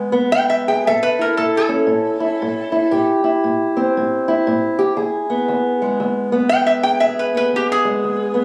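A phone recording made in the room, with light studio reverb and compression, captures this swaggering, laid-back acoustic country blues cut from a longer piece, swinging in 4/4 at 117 BPM. A dark, woody, boxy ladder-braced acoustic guitar on old strings is fingerpicked up front throughout, moving through E, A and Am7 chords. A bright, nasal metal-body resonator slide guitar, played with fingerpicks and set in plate reverb, carries the melody from 0.3 to 3.1 seconds and returns at 6.5 seconds.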